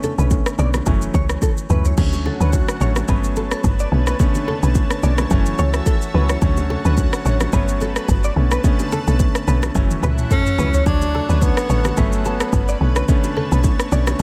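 A romantic, breezy afrobeats groove at 108 BPM in D major opens with polished baby grand piano chords, a bright, scooped clean electric guitar riff with chorus and delay, an electronic afro-pop kit with a deep kick, rim click, shaker, toms and crash cymbal, and very quiet, saturated bongos and congas, joined almost at once by a woody, punchy log drum bass up front, then at 2.0 s by a lush, detuned sawtooth pad with chorus, before a breathy, intimate tenor saxophone slips in a brief jazz-style solo at 10.3 s, all in a dry, close-sounding mix.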